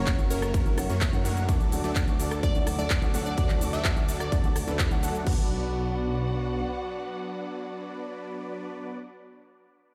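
Euphoric, anthemic festival progressive house opens on a drop, where a punchy electronic kick sits up front with a metallic-hatted big-room kit of claps, cabasa, rim clicks and cymbals until 5.4 seconds, beneath a thick, chorused detuned saw bass, pumping supersaw stabs, a dark, mellow baby grand piano with dub echo, a warm bowed string section in the background, and a catchy plucky unison lead that sings briefly through dub echo before the excerpt settles onto B minor, all heard in a bare stone room.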